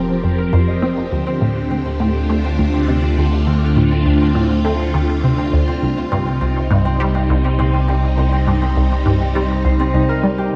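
Dark, plate-reverbed and luminous, this expansive slice of sequencer-driven space music sets a squelchy, detuned blip-pluck riff with chorus, phaser and delay over a round sine sub bass, while a bright, swirling string machine holds warbling chords from F7sus4 through Dm7 to Cm7 and a ringing, fingerpicked concert harp plays delayed arpeggios, fading in across nearly the whole 10.6 seconds.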